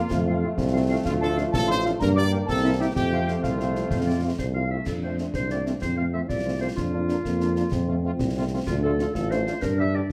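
A proud, festive military-style march for wind band in a straight 6/8, cut from a longer piece, with a bright trumpet section carrying the melody over an up-front tuba bass and concert snare, bass drum and dark-toned clash cymbals. A close-miked euphonium, a distant, soft-edged woodwind section and a wooden-toned piccolo add second lines, while a mellow French horn section fills in accompaniment and a vintage-sounding trombone section holds sustained chords in the background. The piccolo drops out at 4.3 seconds and the trombones at 4.7 seconds, just before the opening strain repeats, all set in a moderate large-studio reverb.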